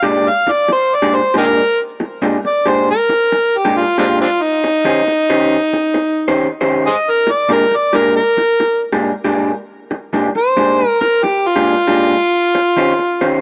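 An overdriven, amplified harmonica and a dark, slightly broken-up electric guitar through a small old amp start together in a rollicking, gritty swing blues, the harmonica soloing up front in a jazz style with light vibrato, tongue slaps and scooped notes. Beneath it, the compressed, lo-fi guitar picks a riff that moves from Bb6 to Eb6, then Bb13 and Eb13, sitting close in the mix as well. Light reverb and a small room ambience surround this dull-topped cut from a longer piece, which runs to 13.4 seconds.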